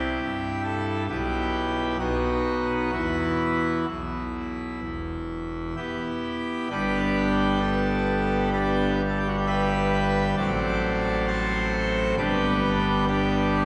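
Rubato pulls at a slow 4/4 pulse that hovers around 62-69 BPM, giving this grave, dark classical chorale a breathing, unhurried gait. A solo pipe organ on full organ carries the whole fragment, its mixtures lending a brilliant, majestic edge and a baroque voicing with audible chiff on the attacks, spanning from E1 up to E5. The opening dwells in E minor, moving through C, Em/B and B before settling on Em. At 6.7 seconds the harmony turns to G major, passing through F#dim/A and returning to G by 12.2 seconds. The organ sits up front, yet a wet church reverb with a 2.7-second decay places the listener further back in the room, until this section of a longer piece breaks off at 13.7 seconds.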